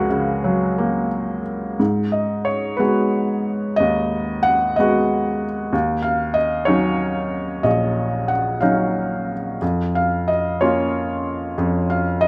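Lyrical classical solo piano, calm and tender, drifts in a rubato 6/8 at about 61 BPM as a felt-muted upright piano plays alone from 0.0 to 12.3 seconds, its soft, mellow, intimate tone sitting up front under close, detailed microphones with light reverb, moving through F#maj7, G#m7, D#m7 and C#6/E# in this brief cut from a longer piece.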